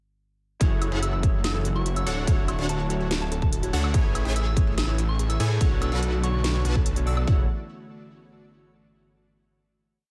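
A thick, detuned saw bass sits up front in this bittersweet, emotional future bass piece, its chorused sawtooth tone following the chord rhythm with a sidechain pump. A punchy electronic kick drives a half-time feel from 0.6 seconds, joined by a trap kit with a sharp snare, crisp open and closed hats with rolls, and a high woodblock. Over this, a supersaw stab plays held chords with syncopated pushes that throb in tempo, carried by pumping and delay, while a bright, barky electric piano plays dotted-rhythm chords in the background through chorus and delay. A soft, pure FM bell enters at 1.0 seconds with short, mellow phrases treated with chorus, phaser and tape echo. Underneath, a very quiet airy pad holds chords from 1.5 seconds, and a faint unison pluck cycles a six-step arpeggio that drifts against the bar. The drop moves through F#m7, Dmaj7, Amaj7 and Bm7 before resting on a final F#m7 chord, all set in light reverb and digital ambience.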